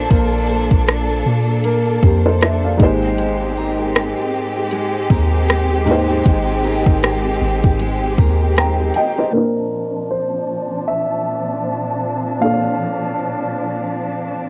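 A tender, romantic contemporary R&B fragment at 78 BPM with a gentle 16th-note swing opens on a muted, boxy upright piano with audible action noise, bowed strings with vibrato and portamento that pump under sidechain, warm fingerpicked nylon-string guitar arpeggios with analog delay in the background, a round, sine-like 808 bass up front, and electronic drums with a soft kick, metallic hi-hats and rim clicks. Drifting between Bbmaj9 and Abmaj9, the bass and drums have dropped out by 9.2 seconds, and at 9.3 seconds a clear, natural concert grand piano takes up a delayed melody as a filter sweep begins, while the guitar stops at 9.9 seconds. The whole has the hazy, tape-softened feel of a home cassette recording in a light reverb.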